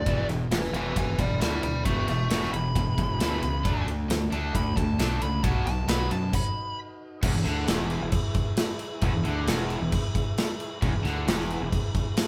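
A fuzzy lead guitar solo opens this confident, swaggering classic rock passage, riding over two bright, overdriven stack guitars picking riffs in the background, a warm fuzz bass, and an up-front drum kit with a punchy kick and bright cymbals. The band hits a stop at 6.3 seconds, the solo ending by 6.8 seconds, and a new section begins at 7.2 seconds as the riffs, bass and drums drive on. Underneath, a lightly overdriven tonewheel organ holds sustained chords through a slow rotary speaker, its key click audible in the light reverb of a band playing live in one room.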